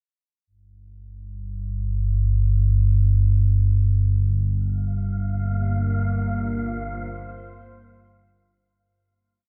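In free time, this dark, unsettling ambient drone piece opens at 1.4 seconds with an up-front, detuned sawtooth-and-pulse analog drone moving under a filter sweep, joined by a breathy, wind-like tuned noise texture holding a high F5 and then, from 5.3 seconds, a deep, wave-folded, ring-modulated pad in slowly shifting sustained chords over a Bb5/G harmony, the mix soaked in a huge, dreamy reverb with a muffled top before the piece fades out.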